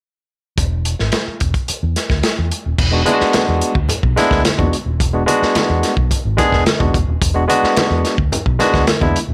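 This excerpt, with light reverb, carries a strutting, playful funk groove at 108 BPM in E mixolydian. A crunchy, gritty, saturated breakbeat kit with dark cymbals and a tight kick sits up front beside a round, foam-muted vintage fingered bass from the start at 0.6 seconds, before the chords settle on E9 at 2.8 seconds. A barky, lightly overdriven tine electric piano joins with plate-reverbed stabs at 2.9 seconds, and low-tuned congas with thick skins murmur in the background from 3.1 seconds.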